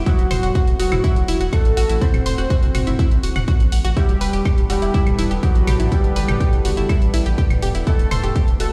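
An evolving wavetable pad opens the piece at 0.0 seconds, morphing and warbling with a detuned, vintage character as it holds mellow chords under a phaser and its own reverb in the background. A moment later, this dramatic, melancholic slice of melodic techno settles into a straight 4/4 at 123 BPM. A punchy, up-front electronic kick and a tape-warm analog drum machine of claves, hi-hat and toms drive it, while a round, deep analog bass pumps to the sidechain from 0.2 seconds. A bold, fat analog synth brass carries the melody with chorus and dub echo. Alongside it, a very quiet, eerie FM bell with an inharmonic tone traces a second line, and a full-bodied sawtooth pluck spins chorused arpeggios through tape echo. The harmony moves from F#dim/E through Gadd9/E to Am7/E, all over E, and the whole cut sounds as if played on a big sound system in a bare, stone-walled room.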